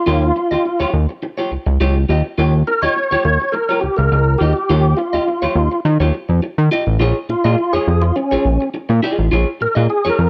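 A lightly overdriven tonewheel organ carries the melody in this driving, hypnotic funk excerpt, its slow rotary speaker, chorus vibrato and key click giving it a fat, swirling voice up front. The groove sits at 104 BPM in a straight 4/4 in Bb dorian, tuned slightly flat to A4 = 435 Hz, and opens on an Eb9 chord before moving to Bbm7 at 7.0 seconds, where the organ takes a solo through to the end. Beneath it, a thick analog bass is the loudest part, its detuned sawtooth and square tones, ring modulation and filter sweep producing a saturated, mellow low end with a fast attack. An electric guitar at the edge of break-up supplies picked, compressed accompaniment that sounds slightly gritty. A digital ambience frames the parts in an artificial space.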